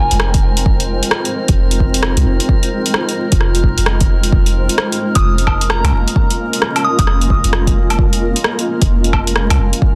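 A swung 4/4 groove of up-front, tape-warm deep house drums with hi-hat, rim click, woodblock and a soft-clipped snare, joined by a deep layered electronic kick from 0.3 seconds, drives this melancholic, ghostly future garage piece, where a round, dark 808-style bass sits beneath a cloudy, grainy, sidechain-pumped granular pad moving from Fm7 to Bbm7/F, a bright, glassy harmonics texture drifts in the background, and a soft, pure FM bell with chorus and digital delay briefly returns at 5.2 seconds, all over vinyl crackle in a dense, heavily limited mix.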